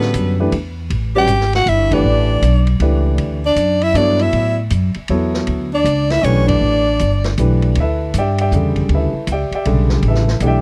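A growling, raspy soprano saxophone with tape echo carries the melody over a warm tenor saxophone second line, an up-front grand piano, a woody, thumpy upright bass and a soft vintage drum kit with dark cymbals in this hypnotic, open modal jazz waltz with a swinging triple-metre feel, the band striking accents at 1.9 and 6.4 seconds before both horns drop out at 7.3 seconds, leaving the rhythm section in a dry, close 1970s-style studio sound for the rest of this excerpt.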